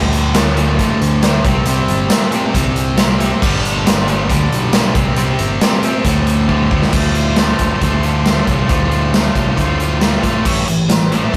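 A double-tracked, overdriven electric guitar riff opens this brooding, swaggering classic rock excerpt in D minor, moving at 137 BPM in a straight 4/4 from the very first moment alongside a bright, direct picked electric bass. A big acoustic rock kit joins at 0.1 seconds, with a punchy kick, a medium-tuned snare, bright cymbals, hi-hat, crash and tambourine sitting up front in a large-sounding room. The riff spans D2 to F4 and moves through power chords on D, C and G before a drum fill at 6.5 seconds leads into a new section built on D minor at 6.9 seconds. An A power chord arrives at 10.5 seconds as the passage is cut off. The rough rehearsal-room sound carries warm saturation and a light reverb, giving the band a loud, raw immediacy.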